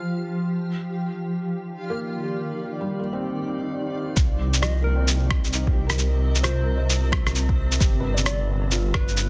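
This future garage excerpt opens on a blurred, granular cloud pad holding sustained chords under a filter sweep, beside a reversed, dreamy texture that stops at 4.2 seconds. At 1.9 seconds a felt-muted upright piano enters with soft, intimate accompaniment, its notes carried by tape echo and sidechain pumping. At 4.2 seconds the swung groove arrives: an overdriven, deep electronic kick re-recorded in a large room, a muffled, up-front shaker and rim click, and a menacing, detuned saw bass with a filter swell, a dark, saturated edge and sidechain pumping. Shortly after, a round, warbling FM synth lead with chorus and tape echo carries the melody from the background. The mood is rainy and wistful, set in light reverb and a dense, heavily limited modern master.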